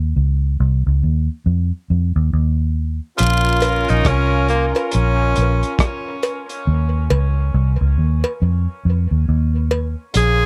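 A dark, round, foam-muted electric bass opens this deep, heavy dub reggae excerpt alone at a slow 69 BPM with a swung 16th feel, before an edgy tenor saxophone takes the melody at 3.2 seconds alongside a clear, lightly vibrato horn section, both trailed by dub echo. Crunchy, saturated breakbeat drums with a tight kick, hi-hat and rim click enter at the same point, joined by a close, dry rattle and cowbell with dub echo, as the chords move through Cm, Ebsus2 and Bbm. The sound is a dry, close 1970s-style studio recording with little reverb, and a part drops out between 6.7 and 10.1 seconds.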